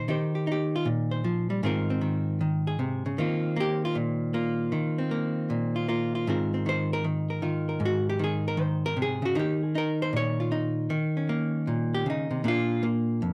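Solo jazz with a relaxed, swinging feel, this brief excerpt features a clean, dark-toned, picked archtop electric guitar placed up front in a moderate club reverb, moving through mellow sixth-ninth and suspended chords on its own from 0.1 to 13.3 seconds before settling on a final Bb chord.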